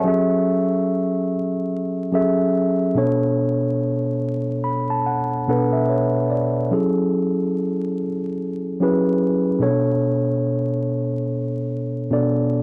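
A lazily swung 72 BPM hip hop groove in 4/4 carries this nostalgic, hazy excerpt in F# minor, where a mellow, up-front tine electric piano plays alone through a low-pass filter, moving from F#m9 to Bm9, F#m7 and back to Bm9 over roughly 12.6 seconds, all soaked in moderate studio reverb, vinyl crackle and the warbly pitch drift of worn cassette tape tuned slightly flat.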